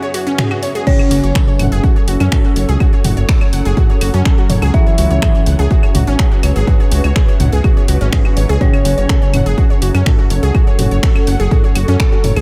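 A heavy, up-front electronic kick drives this cinematic, dramatic melodic techno excerpt at 124 BPM in F# minor, arriving at 0.9 s with a deep, round analog bass just behind. Bright, punchy unison pluck arpeggios with sidechain pumping and tape echo ride on top, with a layered techno drum kit of claves, crash cymbal, finger snaps, hi-hat and toms, a cloudy granular pad, and a very quiet overtone-sweeping drone. Recurring short phrases of brassy synth brass with 12-bit sampler grit pair with an eerie, inharmonic detuned synth bell, over chords moving between C#m7 and F#m.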